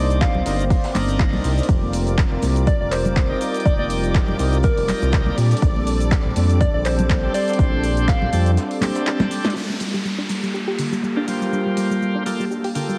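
A swung 4/4 groove drives this smooth, warm deep house excerpt, built on an up-front, overdriven electronic kick and a dry, punchy analog drum machine of handclaps, hi-hat, shaker and snare, with soft-handed congas and a very quiet, dark jazz kit in the background. A round, deep analog bass and a detuned sawtooth pad with chorus carry chords moving from Cm9 through F9sus4 to Bbmaj13, while a bright tonewheel organ shouts out stabs through overdrive, slow rotary speaker, sampler grit, a low-pass filter and analog delay. A gentle FM-style keys lead with chorus and tape echo plays the melody, and from 1.7 s a lush, bowed violin section adds a clear, vibrato-rich texture behind it. After a break at 8.6 s and a drum fill with a band accent, the music shifts to Gm9 at 9.6 s, where a soft triangle pluck plays filter-swept arpeggios over a downlifter and a warbling, nostalgic lo-fi pad joins. The pumping sidechain, lush hall reverb and heavily compressed, cassette-tinged radio sound give the whole mix a hazy, breathing glow.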